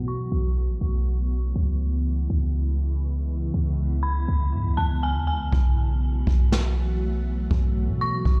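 Spacious and ethereal, this half-time atmospheric cloud-rap excerpt at 121 BPM drifts over B7sus4 and C#m7 as a glassy FM pad with chorus, phaser and sidechain pumping sustains chords beneath an eerie, inharmonic detuned bell melody with digital delay and a deep, clean sine 808 bass, until a boomy, rolled-off brush kit enters up front at 5.5 seconds. All of it is set in a bare room heard through a big sound system with large reverb and a low-pass filter, and a filter sweep runs through the first 5.5 seconds.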